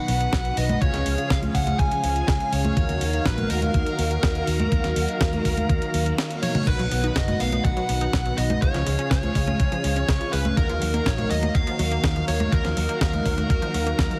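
A straight 4/4 pulse at 123 BPM drives this melodramatic, nostalgic italo disco excerpt in Eb minor, built on a gritty, thumpy electronic kick and a clean 12-bit digital drum machine whose tape-toned congas, hi-hat, snare, toms and crash sound re-recorded in a small room. A fingered electric bass through an envelope filter sits prominently in the mix with a bright, punchy, amped tone. A dark, smooth lead guitar carries the melody with overdrive, tape echo and shimmer reverb. Mellow, round synth brass stabs with chorus and vibrato, and a swirling phased string machine holds sustained chords in the background. At 6.3 seconds a very quiet reverse cymbal enters, joined by a drum fill at 6.4 seconds, leading into a lush, warbling unison pluck playing arpeggios with delay from 6.7 seconds, as the chords cycle through B, Db and Ebmadd9. The whole mix carries light reverb and a heavily compressed, radio-like sheen.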